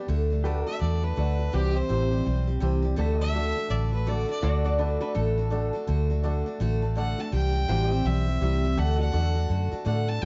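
A bright, full-bodied picked acoustic guitar, a worn baby grand piano and a clean pedal steel holding sustained chords open this heartfelt, nostalgic honky-tonk and classic country piece at a swinging 166 BPM. The piano and pedal steel sit in the background, while a round, punchy, foam-muted electric bass sits up front. An earthy, nasal fiddle with light vibrato carries the melody from 0.7 seconds and gives way to a metallic lap resonator guitar played with slide at 4.4 seconds, then a brief piano fill leads into the fiddle's return at 7.0 seconds, all in a dark, dry mix moving between D and C chords.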